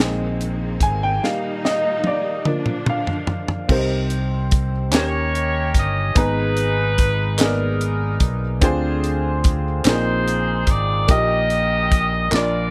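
Lightly reverberant and close, this soulful, reverent slow gospel excerpt in a straight 6/8 opens with a woody, slightly detuned upright piano carrying audible action noise, lush bowed strings that drop out at 3.7 seconds, a punchy fingered electric bass and a dry funk drum kit with a high-tuned snare that plays fills, before a bright, vintage-toned saxophone section with light vibrato and tape echo takes the melody at 4.9 seconds over hollow group handclaps in the background.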